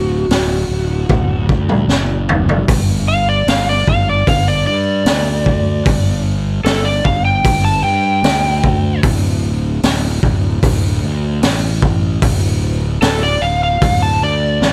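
Dry and up front, this swaggering, gritty slice of blues rock power trio and southern rock at 76 BPM in D major features an overdriven slide guitar played with fingerpicks soloing throughout, a growly, fuzz-laden fingered electric bass, and a saturated garage drum kit with a high-tuned snare and punchy kick that plays a fill from 1.1 to 2.7 seconds, while the chords move from D to G5 and then to D5 at 9.0 seconds.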